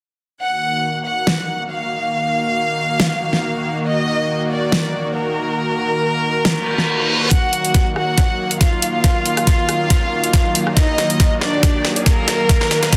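Opening at 0.4 seconds on an Ebmadd9 chord in Eb harmonic minor, this menacing, heavy wobble dubstep excerpt at 139 BPM in a swung half-time 4/4 sets an intimate, close chamber violin section with light vibrato and tape echo carrying the melody over a lush, detuned supersaw pad pumping under sidechain, joined at 1.3 seconds by an up-front dubstep kit with a huge high-passed snare, rim click and bright hats, while a reverse cymbal and riser rise in the background from 6.6 seconds before a knocking, tape-warm electronic kick lands at 7.3 seconds to drive a build-up and drum fill, all in light digital reverb and a dense, heavily limited modern master.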